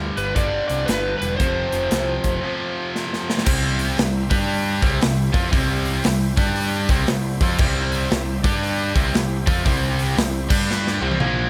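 A bright, double-tracked distorted electric guitar drives this gritty, raunchy stretch of blues rock and southern rock, its overdriven, picked riff sitting up front with a swung 4/4 feel. A big rock drum kit, also up front, pairs a punchy kick and medium-tuned snare with bright cymbals, while a growling, round picked bass adds overdriven weight underneath. An overdriven slide guitar, played with fingerpicks and washed in plate reverb, carries a short melody only from 0.2 to 2.9 seconds before a break. Beneath it all, a thick, very quiet tonewheel organ holds sustained chords through a slow rotary speaker. After a drum fill, the music moves at 3.5 seconds into a second section that swings back and forth between C and G5, closing on another fill in a moderate club room.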